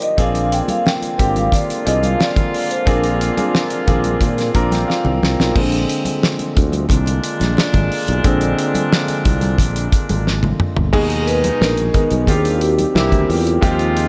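A straight 4/4 groove from a damped, dry 1970s drum kit with a fat snare and tight kick sits up front in this lush 1970s-style soul passage, joined by a bright, growly fingered electric bass and very quiet, thin-skinned congas. A ringing vibraphone with soft mallets and slow motor vibrato carries the melody, while a clear concert grand piano with deep bass accompanies throughout and takes a solo from 5.6 to 10.9 seconds before the vibraphone returns at 10.9 seconds. Beneath them, a mellow French horn section holds sustained chords and a tight, vintage jazz-style horn section adds stabs, all in a light small-room reverb on this warm excerpt cut from a longer piece.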